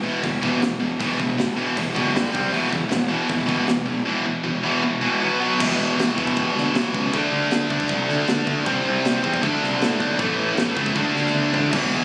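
A relentless, dark heavy metal fragment opens with a bright, up-front high-gain guitar riff over a growly fuzz bass, alongside a compressed distorted guitar in the background that drops out at 5.6 seconds and returns at 11.7, and a very quiet double-tracked overdriven guitar, while a big acoustic rock kit with a boomy kick and medium-tuned snare carries the straight 4/4 feel and plays a fill at 11.3 seconds, captured on a phone in the room with club reverb.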